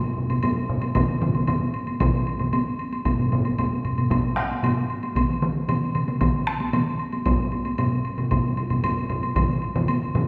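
A wet recital-hall reverb with a decay of about 1.7 seconds surrounds this short passage of Japanese traditional taiko drumming, lifted from a longer piece and set at a driving, ceremonial 114 BPM in straight 4/4. A taiko ensemble struck with heavy sticks sits up front in a live room from 0.2 seconds, joined almost at once by solo taiko drums, also played with heavy sticks, whose vintage, band-limited tone gives them an aged character. A woodblock, woody and similarly band-limited, clicks along beneath from 0.3 seconds. At 1.0 second two further taiko ensembles come in with hard sticks, one heard in a small room and the other close and dry, the latter dropping out at 9.5 seconds. The layered drums form a dense wall of percussion that carries through to the cut.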